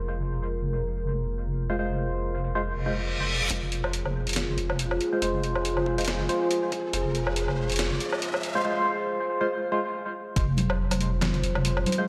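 A dark, detuned ambient pad in F minor and a deep, saturated wobble bass open this brooding, meditative deep dubstep excerpt at 140 BPM with a swung half-time feel, soon joined by hollow organ stabs with dub echo under a filter sweep, while a reverse cymbal and riser build tension as a layered electronic kick and a gritty, pitched-down trip hop sampler kit of handclaps, hi-hat, snare and woodblock come in at 3.5 seconds, leading to a drop at 10.4 seconds where bright, soft-handed congas arrive, the whole mix dreamy and soaked in hall reverb.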